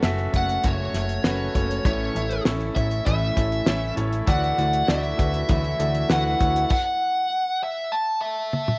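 A straight 4/4 groove from a damped, dry 70s drum kit with a fat snare drives this anthemic piano-driven pop excerpt, where a concert grand with audible action noise, a picked jumbo steel-string acoustic guitar riff in the background and a thick, saturated analog bass move through F#m, A and Dadd9 beneath a bluesy, distorted electric lead guitar up front that enters at 0.4 s, until the piano, acoustic guitar and bass stop at 6.7 s, leaving drums and lead to carry on to a drum fill at 8.5 s.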